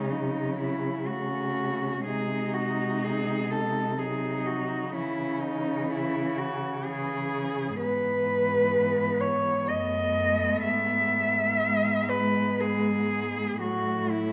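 Four solo cellos begin together in a solemn, yearning classical piece in C# minor, moving at a slow 62 BPM in 3/4 with a flexible, rubato feel. Up front, a rich, focused cello carries the lyrical melody between C#4 and E5, its vibrato singing over a smooth top. Beneath it, a second cello shapes an expressive inner line with vibrato and portamento, while a third, soft in attack, fills out the accompaniment in a lower register. A more distant fourth cello anchors the bass from F#2 to C#3, its slides and vibrato giving the low end a gentle, warm glow. At 7.8 s the harmony turns toward E major, before the phrase settles on an F# minor chord at 13.6 s. The players sit in a moderate recital hall ambience with a 1.6-second decay, and this fragment of a longer work ends at 14.3 s.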